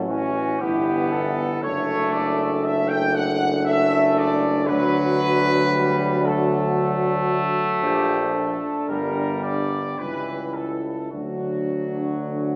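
Classical brass band hymn in a tender, lyrical 3/4 with rubato phrasing, where a dark trumpet section carries the melody up front from 0.1 s over a mellow French horn section's second line, while a brilliant, vintage-toned trombone and a distant euphonium with light vibrato fill out the accompaniment and a clear tuba anchors the bass, the whole ensemble set in the wet reverb of a recital hall.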